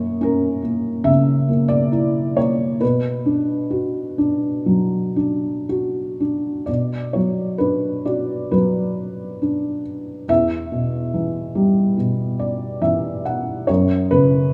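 Classical solo piano in B minor, dark and wistful, drifting in a rubato 4/4 between 56 and 71 BPM through a short passage cut from a longer piece, its harmony moving from F#7 to Bm, then to Em at 10.3 s and settling on F#5. A felt-muted upright piano carries everything from E2 to F#5, its thick felt giving a boxy, intimate tone with audible action noise, placed up front in a moderate scoring-stage reverb. The second half opens at 6.7 s, and a brief felt piano fill arrives at 12.0 s before the closing chord.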